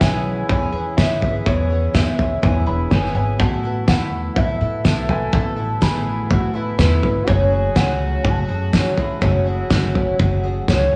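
This short indie folk excerpt opens with the whole band together in a hopeful, straight 4/4 feel, its arrangement steadily building. A twangy, slightly broken-up electric guitar carries the melody through tremolo and digital delay, while a soft-attack trombone plays a distant second line with its own delay. Beneath them, a boxy, shimmering twelve-string acoustic guitar picks out the accompaniment, a very quiet brass ensemble holds smooth sustained chords with light vibrato, and a woody pizzicato upright bass anchors the low end. The cloth-damped drum kit sits up front, muffled and gritty, with a fat snare, tight kick and toms, as a jingly tambourine stays in the background. The harmony moves from E6 to Asus2 at 3.4 seconds and F#madd9 at 7.3 seconds, all set in a recital hall reverb and coloured by the warbling pitch drift of worn cassette tape.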